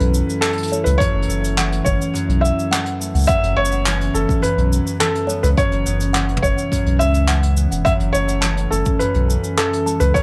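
A felt-muted upright piano carries a soft, intimate melody with audible action noise and tape echo, over a warbling, nostalgic pad, fingerpicked concert harp arpeggios, a round sine sub bass and a jazz kit played with brushes, cabasa, handclaps, hi-hat and toms. This is a delicate folktronica excerpt at 105 BPM in F# minor, moving from F#m7 to C#m7/F# and then A/F#. A woody, hollow kalimba second line with tape echo enters in the background at 0.7 seconds, and a deep, tape-warm electronic kick joins at 1.0 seconds, all under light reverb.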